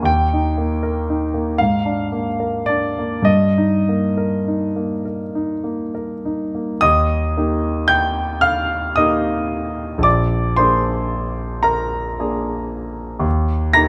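A romantic classical nocturne for solo piano in E-flat major, this short excerpt moves at a slow, rubato 6/8 pulse of roughly 33-40 beats per minute, with a nostalgic, serene mood. The grand piano sounds polished and present, placed up front by close, detailed microphones and set in light reverb, spanning from deep bass notes to the high treble. Its opening phrase, built on tonic and dominant harmonies, is heard again from 6.8 s before settling back onto the home chord at 13.3 s.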